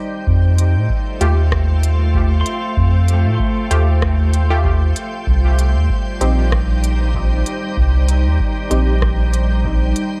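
A tape-warm electronic kick and a smooth-hatted drum kit with rim clicks and dub echo set a lightly swung 96 BPM groove in 4/4 for this deep, hazy ambient dub fragment in C dorian, where a round, up-front sub bass with tube saturation sits under a calm, organ-like pad glowing with ensemble chorus and reverb, muted sawtooth chord stabs with a filter sweep drift through echo, and a twangy pedal steel guitar, played with fingerpicks, slide and volume swells, adds background arpeggios from 2.4 to 4.4 seconds as the harmony moves from Fadd9 to Cm at 5.3 seconds.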